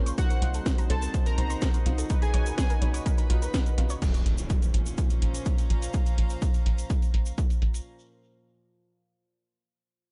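This hypnotic, dramatic melodic techno excerpt at 125 BPM opens on a moody analog pad, bold brassy synth stabs, a tight sawtooth sequencer bass, a very quiet evolving drone and a floating studio string section. Joining almost at once are a warbly, lo-fi dusty pluck arpeggio, a grainy tube shaker, a techno kit with cracking snare and metallic hats, a punchy up-front kick, an airy supersaw melody and a crystalline wavetable pluck second line. At 4.0 s the pad, brass stabs and dusty pluck stop as a background electronic impact lands on a Bbmadd9 chord, while the bass, drone, strings and drums carry on in an echo-heavy mix where sidechain pumping moves the bass, strings, brass, plucks and supersaw, and analog delay trails the plucks, brass, supersaw, kit and shaker.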